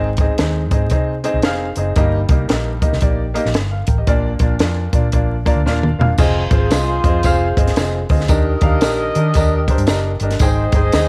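A bright, woody upright piano comps through this joyful, danceable excerpt of uptempo 1960s-style soul at 114 BPM with a swung feel in Eb major, backed by a round, foam-muted vintage electric bass and a dry, punchy compact cocktail drum kit with dark cymbals and a high-tuned snare, as piano and drum fills at 5.1 and 5.7 seconds usher in a punchy horn section with light vibrato and a jingly background tambourine at 6.2 seconds, all set in light studio reverb under a layer of vinyl crackle.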